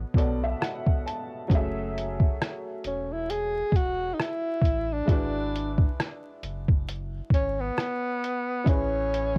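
Hazy and melancholic, this lo-fi hip hop excerpt in F# minor drifts at 67 BPM with a swung 16th feel, as a woody, slightly detuned upright piano opens with a fill over a round sine sub bass and a muffled, pitched-down sampler drum kit with thumpy kick, hi-hat and rim click sitting up front, before a breathy, whispered tenor saxophone enters at 2.9 seconds with an intimate jazz-style solo through chords moving from Bm7 to F#m7, E7 and Amaj7, all wrapped in a cassette home-recording character with vinyl crackle and little reverb.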